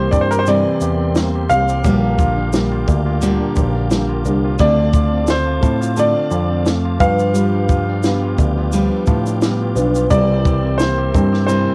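Acoustic pop with a wistful, tender feel and a light swing, where a brilliant, woody upright piano carries the melody up front over a dark, thumb-plucked nylon-string guitar, a bell-like tine electric piano playing the bass, a slightly broken-up electric guitar fingering arpeggios in the background, soft tonewheel organ chords with chorus vibrato and key click, and a dry cocktail drum kit with a high-tuned snare, tight kick and shaker entering at 0.1 seconds, all colored by light reverb and the character of a home cassette recording.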